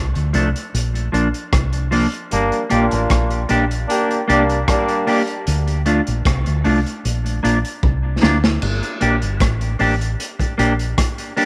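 Meditative and hypnotic, this roots reggae excerpt moves at an unhurried 76 BPM in G minor, cut from a longer piece. A deep dub fingered electric bass sits up front with a round, foam-muted, punchy tone, holding the low register from G1 to D2 until about 10.9 seconds. The crunchy breakbeat drum kit sounds gritty and saturated in a small room, with dark cymbals, a medium-tuned snare, a punchy kick and a rolled-off top, and a drum fill at 7.8 seconds leads into the second section at 8.6 seconds. A clean, fingered electric guitar supplies the accompaniment, coated in lush chorus and tape echo. Between 2.3 and 5.2 seconds a brilliant, tight trombone section adds a second line with vibrato and its own tape echo. A moderate spring reverb gives the mix a dubby space over chords that cycle through Dm, Bb and Gm.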